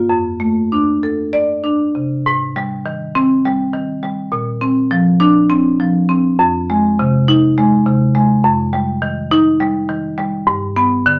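A boxy, up-front studio sound with moderate reverb frames this flowing contemporary classical passage from a longer piece for solo marimba, its woody rosewood bars struck with medium hard mallets in a supple rubato 7/8 that drifts from a brief opening into a longer section moving through Abmaj7, Bbadd9, Fm7 and Ebadd9/F before arriving on G at 10.5 seconds.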